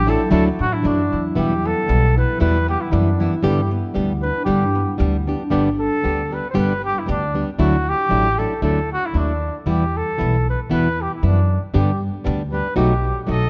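A mellow, distant trumpet sings the melody over ringing, fingerpicked concert harp arpeggios, thumpy gut-string pizzicato upright bass and warm, fingerpicked flamenco guitar in this passionate, dramatic mariachi excerpt with a lightly swung two-beat feel and moderate concert hall reverb; the harp stops at 8.1 s, and a bright trumpet adds a brief second line at 13.3 s.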